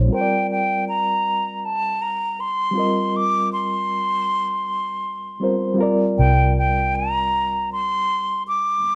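R&B and neo-soul in G minor at 79 BPM with a gentle 16th-note swing, this late-night, smooth excerpt pairs a reedy, slightly out-of-tune electric piano with tremolo throughout and a breathy flute melody with slapback echo from 0.1 seconds over Gm7, Fsus2 and Csus2, while a dark, foam-muted electric bass sounds only briefly at the start and returns at 6.2 seconds, all set in moderate studio reverb with the worn, warbling pitch drift of old cassette tape.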